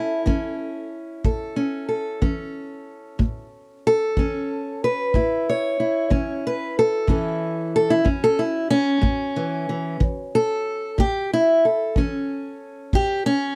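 A fingerpicked steel-string parlour guitar sits up front in this swaggering, laid-back excerpt of acoustic country blues in 12/8. Its bright, boxy tone carries fresh-string sparkle and audible finger squeak, and it moves into a solo at 7.1 seconds. A punchy, polished kick drum played with brushes, heard in an airy studio room, supports it from 0.3 seconds, all captured in a dry, close 1970s-style studio sound.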